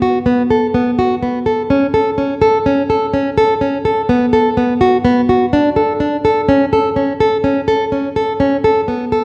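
Contemporary instrumental in a straight 5/4 at 125 BPM, this pensive, hypnotic fragment from a longer piece features a lone nylon-string guitar, fingerpicked in a classical style with fresh strings and held up front, moving between B3 and A4. The dark production sets the instrument in a wet recital hall reverb with a 1.7-second decay, and the music shifts into a new section at 1.7 seconds before running to its close at 9.2 seconds.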